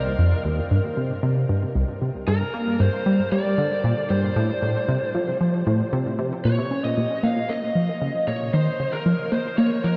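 Hypnotic and mysterious, this ambient fragment, cut from a longer piece, moves at 115 BPM in a straight 4/4 and settles into Bb minor from 6.5 seconds. A tight, driving sequenced synth carries the riff throughout, its detuned sawtooth and square tones shaped by a plucked filter and a fast attack, thickened with chorus and tape echo. Above it, a lead guitar through a small cranked amp plays the melody between Bb4 and F5, its picked, overdriven tone sounding lo-fi and warm, trailed by shimmer reverb and tape echo. Both parts sit up front, though the guitar is the quieter of the two. The harmony shifts from C5 through Gm and F before landing on Bb minor at 6.5 seconds, marking a new section. A huge, wet reverb with an 8.7-second tail surrounds the whole, giving the dark, warm production a cavernous depth.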